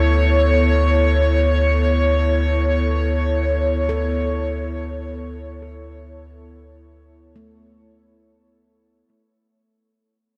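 Soaked in a huge, dreamy reverb, this weightless, peaceful ambient excerpt in free time, tuned to A4 = 442 Hz, rests on a single Aadd9/D chord: an airy, breathy pad with chorus holds sustained chords up front over a deep, round analog bass on D2, while a ringing handpan plays meditative arpeggios through analog delay in the background, and the whole passage fades out from the opening second.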